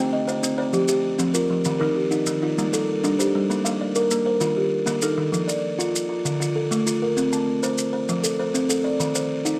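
Set in a straight 12/8 at 131 BPM, counted in dotted quarters, this southern African traditional piece is cut from a longer work and turns on a hypnotic, rippling mbira-style interlocking cycle in F mixolydian. Two buzzing kalimbas play arpeggios: the louder one, up front and spanning D3 to A5, has a woody, mellow, airy ring from fingertip plucks. The second, softer one is thumbnail-plucked, giving short, dark, smooth notes from Eb3 to Eb5 before it stops at 5.5 seconds. Grainy, close and dry maracas enter at 0.3 seconds and keep a quiet acoustic pulse underneath. The harmony moves from Cm through Eb, Gm and Bb, then shifts at 5.3 seconds into a passage of F, Dm and Am/C, ending on Cmadd9/Eb. A moderate echo-chamber reverb blends with a small-room ambience to give the sound a gentle halo.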